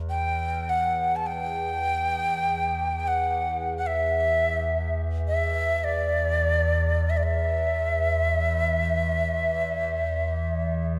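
World meditative music in free time and E minor, this haunting, spacious excerpt sets a breathy, vibrato-laden Native American-style cedar flute, carrying a melody spanning D5 to A5 through analog delay, over a bright, morphing wavetable pad holding an E2 drone with phaser and its own reverb, all bathed in a wet plate reverb with a 3.3-second tail and an echo-heavy mix.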